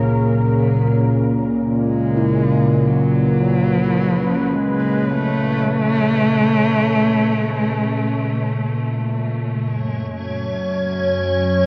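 Dark ambient drone in a dark, cavernous mood. An up-front, evolving analog drone with chorus anchors the piece beneath a sweeping, resonant pad, and very quiet metallic bronze gamelan-type gongs ripple arpeggios. A shadowy bowed cello fades in with vibrato, portamento and tape echo and sings until 9.0 s, and an icy, crystalline glass pad appears at 10.1 s, all steeped in a huge, wet reverb and the warbling pitch drift of worn cassette tape.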